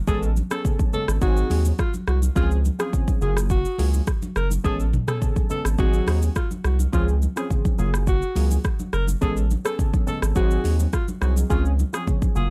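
A straight four-beat afrobeats groove drives this romantic, sunny section of a longer piece. It rests on an electronic afro-pop drum kit sitting up front, with a deep kick, metallic hi-hats, rim clicks, shaker and toms. A thick, saturated sine sub bass anchors the low end with fast-attack, sustained notes, also placed forward in the mix. Congas with a thick skin and hard hands join at 0.4 s from the background. Analog keys built from detuned pulse and sawtooth tones supply round, evolving chords through a filter sweep and chorus, cycling through Amaj9, Ab7, Dbmaj7 and Gbmaj9. Over them a breathy alto saxophone carries the solo melody in a smooth pop style with light vibrato and a trailing delay, all framed by a dark, warm production with little reverb.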